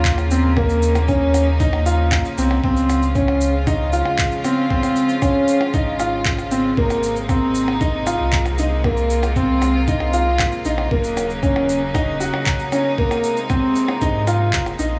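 A steady, straight 4/4 pulse at 116 BPM drives this intimate, hypnotic piece of piano and strings electronica, cut from a longer work. A muffled, thumpy electronic kick, pitched down and compressed, anchors the groove. Produced electronic handclaps, shaker and percussion blips sit lower in the mix with a tape-warm tint. Up front, a boxy grand piano plays a riff coloured by tape echo, while a round, sine-toned sub bass with a fast attack pulses under sidechain pumping. Behind them, a distant chamber string section holds earthy bowed chords with light vibrato as the harmony moves through Bbm, Db, Abadd9 and Ebm7, set in light reverb and a small room ambience.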